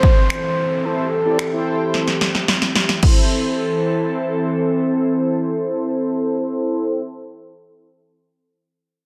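A dense, heavily limited mix bathed in lush hall reverb opens this driving, energetic dance-pop passage in A minor at 110 BPM, where a horn-like synth lead with vibrato sings a short melody over an airy, breathy pad and a punchy analog drum machine that rolls into a fill at 1.9 s before dropping out at 3.2 s, while a downlifter sits in the background and round, brassy synth accompaniment enters at 0.8 s to pump alongside the pad.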